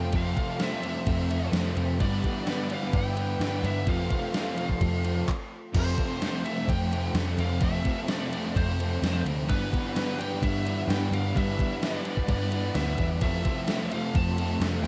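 A wistful, hazy shoegaze and dream-pop rock excerpt opens with a distorted, bluesy lead guitar melody trailing digital delay over a silky, detuned string pad that drops out at 5.3 s and returns at 13.2 s, a very quiet twangy arpeggio guitar through a small old amp, two crunchy overdriven riff guitars (with double-tracking and analog chorus between them), a lo-fi garage guitar riff with reverse reverb, and a round, foam-muted bass up front, while a thumpy gated 80s drum machine with crash, handclaps and a gated-reverb snare enters at 0.1 s in a dark, ambient production.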